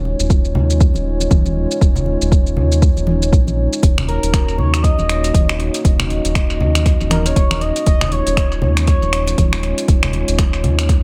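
A dark, nasal analog pad with slow-attack chords and a round, deep analog bass open this driving, earthy afro house excerpt at 119 BPM, both pumping against an overdriven electronic kick that sits up front, while low-tuned congas played with soft hands sit in the background and an afro-pop kit adds finger snaps, metallic hats and shaker through tape echo. The harmony moves between Dbadd9/Eb and Ebm7 with a 16th-note swing. At 4.1 seconds a smooth, expressive synth lead with vibrato, lush chorus and analog delay floats in until 9.6 seconds, all within an echo-heavy digital ambience.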